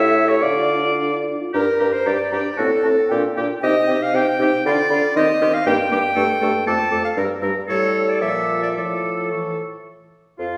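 Urgent and dramatic, this quick classical-period movement for wind quintet in 2/4 moves with a rubato feel and is cut from a longer piece. A mellow, hollow flute with airy vibrato carries the melody from the background. Against it sits a distant, roomy oboe playing the second line with soft-attacked vibrato. A clear, close-miked clarinet and a dark French horn supply the accompaniment, the clarinet sitting up front. The warm bassoon holds the bass line, also up front, with light vibrato. After a short opening, the main passage begins at 1.5 seconds, and its minor-mode harmony, shaded by diminished chords, comes to rest on an A major chord at 9.3 seconds, all within a wet recital-hall reverb.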